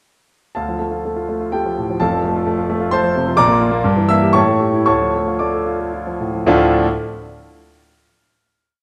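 Stormy and passionate, this brief classical piece is a virtuoso piano study in a three-beat metre, played with a freely breathing rubato. A solo grand piano carries everything, its tone warm and open with long sustain, placed up front and sounding its tune in filled octaves over sweeping arpeggios that reach from deep in the bass to high in the treble. The harmony moves from D minor through F and B-flat, darkens on a diminished chord, and leans into A7 before returning home to D minor. From about 2.7 seconds the music slows down, drawing the phrase toward its close, and the piano falls silent at 6.9 seconds. A final chord rings on in the reverberant recital-hall space until 8.0 seconds, the wet acoustic lending the short work a spacious, resonant finish.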